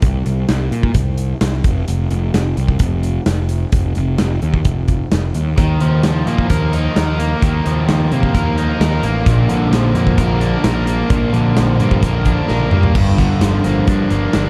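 A fuzzy, round picked bass with overdrive opens this cool, bittersweet indie rock excerpt at 130 BPM, alongside a dark, smooth studio drum kit with a punchy kick, medium-tuned snare, hi-hat, crash and toms, both sitting up front over C5 and F5 chords. At 5.6 seconds a crunchy, bright, double-tracked overdriven electric guitar riff enters over Ebsus2 and then Bb. A drum fill at 12.5 seconds leads into a new section on Gm7, all in a light reverb.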